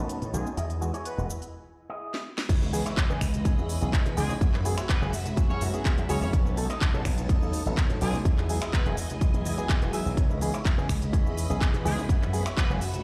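Filtered disco house with a groovy, sensual feel, built on a barky, lightly overdriven reed electric piano with fast tremolo and phaser, a swirling phased string machine in the background, a twangy envelope-filtered guitar riff and a punchy slap bass up front, all pumping under a filter sweep that opens the first 2.5 seconds before a short break and drum fill. At 2.5 seconds the drop lands with a punchy electronic kick, joining the house kit's cracking snare, crisp hats, snaps, claps and shaker, plus distant, very quiet tambourine and congas. A tight, bright horn section with light vibrato and delay states the melody in three entries, and a clean electric guitar fill appears around 9.5 seconds over lush jazzy chords.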